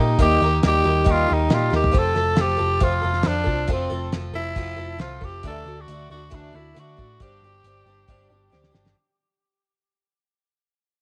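Hopeful and nostalgic, this short cut from a longer folk rock and heartland rock piece moves in a straight 4/4 and fades out across its full nine seconds. A raspy tenor saxophone carries the melody up front, its gritty, punchy pop-style tone edged with vibrato. Beneath it, a picked twelve-string acoustic guitar provides shimmering, octave-doubled accompaniment with a bright, boxy archtop character, while a hollow-body short-scale electric bass sits round and dark near the front. An electric guitar through a small old amp plays a slightly broken-up, lo-fi riff in the background, stopping at 1.9 seconds as the chords move from Eb to F, later passing through Dadd9 and Gsus4. The cloth-damped drum kit enters at 0.2 seconds with a thuddy, dry sound, fat snare and tight kick, adding fills at 1.7 seconds and again near the close, all set in a light studio reverb.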